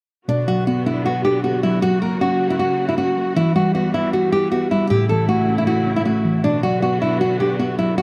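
Light reverb gives this dark, eerie hip hop fragment from a longer piece a close, shadowy air, moving in a half-time 4/4 feel at 156 BPM in B minor. Up front, a fingerpicked nylon-string guitar carries the melody over muted, felt-like synth keys with a soft, full-bodied, chorused tone, both playing from 0.3 to 8.0 seconds. Behind them, a distant symphonic string section holds lush bowed chords with focused vibrato as the harmony moves through Bm, F#, Emadd9 and A before returning to Bm.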